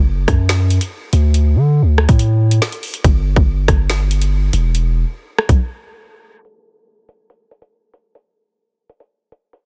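Set at 141 BPM in 4/4 with a half-time feel, this dark, ominous drill track is cut from a longer piece and is tuned slightly sharp to A4 = 441 Hz. A deep, sine-toned 808-style bass opens it, ranging from E1 to D3 with a fast attack and long, decaying notes. An electronic drill kit joins at 0.3 seconds, pairing a hard-clipped kick and woody snare with metallic hi-hats and a rim click. Bass and drums both sit up front. The bass stops at 5.6 seconds for a brief break, and from 6.4 seconds a filter sweep carries the drums through the closing stretch. A digital ambience surrounds the parts, and the dense, heavily limited modern master passes through a low-pass filter.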